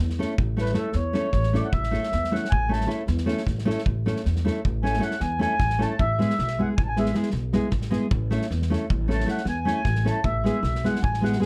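Festive and wild, this short cut from a longer piece is Balkan folk in the manner of a wedding band, driving along in a lopsided 11/8 with a straight feel. The mellow accordion carries the lead from 0.6 seconds, its reedy, slowly beating tone sitting up front and mid-forward in a warm upper register. Beneath it, the nylon-string guitar supplies fingerpicked accompaniment with a full-bodied, deep classical character, a touch of finger squeak audible in its strings. The upright bass anchors the low end with woody, thumpy pizzicato on gut strings, while a natural country drum kit adds a punchy kick and medium-tuned snare heard in a small room. The harmony rests on A and shifts to E over an A bass at 6.0 seconds, then alternates between the two. Moderate studio reverb frames a dark, warm production.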